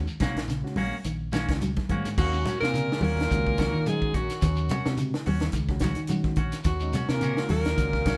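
Intense and defiant, this afrobeat excerpt grooves at 107 BPM in Eb dorian on an Ebm7 chord, with a lightly swung sixteenth feel. A tight, up-front funk drum kit with a high-tuned snare and a tight kick anchors a round, dark fingered electric bass, while damped congas and a grainy shekere sit in the background. Around them, a dark picked clean guitar plays arpeggios, a second clean guitar adds stabs, and a reedy electric piano shimmers with tremolo very quietly. After a drum fill at 1.8 seconds, a bright, punchy alto saxophone takes the melody from 2.2 seconds, backed by a growling, raspy tenor saxophone and a tight trombone section, all in one room with moderate reverb.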